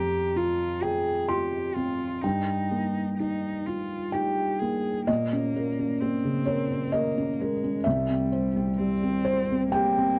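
A felt-muted upright piano sits up front in this reflective, melancholic neoclassical piece for piano and strings, its dark, intimate, vintage tone softened by thick felt and carrying audible action noise as it plays the accompaniment across a span from C2 to C6. A rich, bowed cello, one player with smooth, even vibrato, carries the second line at a lower level, and both parts run the full 10.2 seconds of this passage cut from a longer work. The pulse moves freely around 64 BPM in 3/4, with chords shifting from Fsus2 through Eb/G to Bbmadd9 at 5.1 seconds and closing on C, all captured in a dry, close 1970s-style studio sound.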